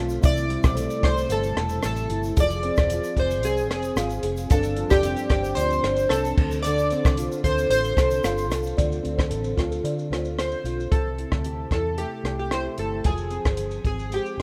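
Indie bedroom pop at 112 BPM in C major, dreamy and hazy, cut from a longer piece and given a rough home-demo mix with light reverb and studio ambience. Glossy, airy synth keys carry the melody up front through lush chorus and tape echo, over a fingerpicked, full-bodied jumbo acoustic guitar treated with ensemble chorus and vibrato, a round, foam-muted electric bass and a dark, compact cocktail drum kit with a punchy kick, hi-hat, rim click, crash cymbal and shaker. A mellow, woody kalimba adds a very quiet second line until 10.2 s, a grainy tube shaker sits in the background until 8.8 s, and the chords drift through C6, Fm, G7sus4 and Dm7.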